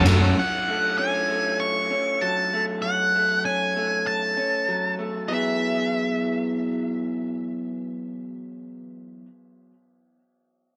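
Rock in a straight 4/4 with a soaring, cinematic mood, cut from a longer piece and set in a dark production with light reverb and small-room ambience. An up-front octave-fuzz lead guitar, distorted and fed through tape echo, carries the melody from the opening until 8.5 seconds, while an electric guitar through a small old amp picks slightly broken-up, lo-fi, compressed arpeggios with its own tape echo from 0.4 seconds. The harmony rests on F#madd9 before shifting to Eadd9 at 5.3 seconds.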